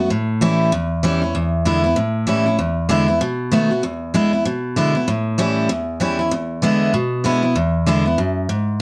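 A moderate studio reverb gives this short cut from a longer rock piece a touch of room, while the lone picked steel-string acoustic guitar sits up front, bright and full-bodied with a dreadnought's depth. The mood is rollicking and retro, driven by a 60% swing on the eighth notes in 4/4. The guitar plays solo across its whole span, reaching from E2 up to F#4, and is tuned to A4 = 442 Hz. Its opening passage moves through A7, E7 and B7 before a second passage begins at 3.8 seconds, circling between E7 and A7 until the cut ends at 8.8 seconds.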